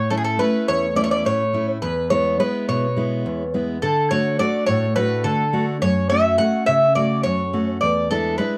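A bright, metallic Greek bouzouki carries the melody from the first moment, its picked double strings, some doubled at the octave, sitting up front alongside a fingerpicked steel-string acoustic guitar that accompanies through A, E, D, F#m and E7. This short excerpt of hopeful, sunny Greek folk moves in a straight 7/8 at 210 BPM counted in eighths, in A major. The production is dark and warm, with light reverb around the pair.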